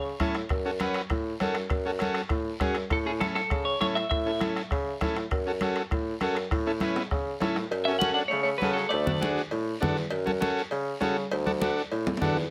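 A straight cumbia groove in four drives this joyful, festive clip from a longer piece, built on hard-hand congas, a soft-beater bombo that drops out at 7.7 seconds, ringing timbales and cowbell in the background, and a raspy, distant guiro. An up-front bassoon with light vibrato carries the bass line while a buzzy vintage combo organ fills in the chords. A bright, twangy electric guitar, treated with spring reverb and tape echo, plays melodic phrases, and at 7.9 seconds a gritty, growling trumpet joins it as a second line.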